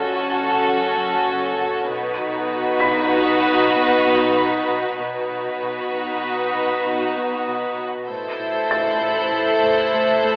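Heard through a narrow, telephone-like filter and bathed in a wet scoring-stage reverb, this ominous, tense suspense cue moves at 97 BPM in a straight 5/4, shifting from F#m to B and then to Am at 8.1 s. A clear, floating violin section carries the sul tasto melody over a rich, up-front second violin line and a pure viola accompaniment, while a glassy, ethereal glass harmonica holds sustained chords and a very quiet felt-muted upright piano adds a dark, mellow texture with audible action noise. Underneath, a smooth ring-modulated synth bass riff sits in the background with a warm cello section and a double bass section, and a high violin section texture joins at 8.1 s before this excerpt ends at 10.4 s.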